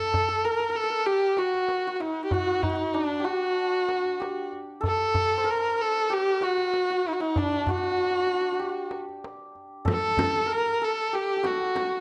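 A moderate recital-hall reverb surrounds this festive, passionate Persian modal ensemble piece, cut from a longer work and set in a straight 4/4. A rich, bowed kamancheh carries the melody up front with smooth, even vibrato, while a mellow hammered santur rings and shimmers as a quieter second line and a deep, dry tombak plays percussion close by. At 9.9 s a frame drum struck with hard hands enters, adding a warm, live-room character to the closing seconds.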